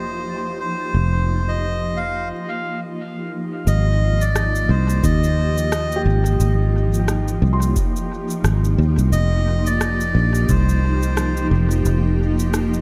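Light reverb gives this ambient dub excerpt a deep, spacious air, with a round, foam-muted fingered electric bass sitting up front from 0.0 s, moving between F1 and Eb2 at 88 BPM in 4/4 with a swung sixteenth feel. Above it, a granular cloud pad holds blurred, full-bodied sustained chords with its own built-in reverb, while a felt-muted upright piano plays soft, mellow arpeggios in the background, touched with dub echo. A reedy, breathy melodica carries the melody between C5 and F5, its echoed phrases lasting until 11.5 s. The harmony moves from F5 to Abmaj7 at 3.7 s, where electronic cabasa and rim click enter with dub echo, and returns to F5 at 9.1 s. A deep, tape-warm electronic kick drum anchors the groove from 5.0 s to 10.6 s.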